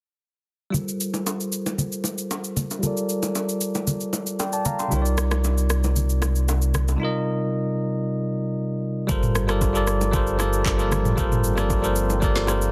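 Soulful and deep, this amapiano groove moves at 115 BPM in a straight 4/4 in G minor, tuned slightly flat to A4 = 435 Hz, and is cut from a longer piece. A bell-like, clean tine electric piano sits up front carrying the Gm11 and Cm11 chords through a low-pass filter that sweeps across the opening stretch, starting at 0.7 seconds together with an electronic, overdriven afro-pop kit with a knocking kick, woody snare, handclaps, rim click, shaker and toms. Softly played congas and bongos add an acoustic, saturated layer of hand percussion beneath them. A full sine sub bass with an octave enters at 4.9 seconds, sitting up front with a fast attack and sustained notes. After a break, a moody, detuned sawtooth pad with chorus, built-in reverb and sidechain pumping arrives in the background at 10.3 seconds, lending dark depth to the return of the Gm11 chord in a dense, heavily limited modern mix with digital ambience.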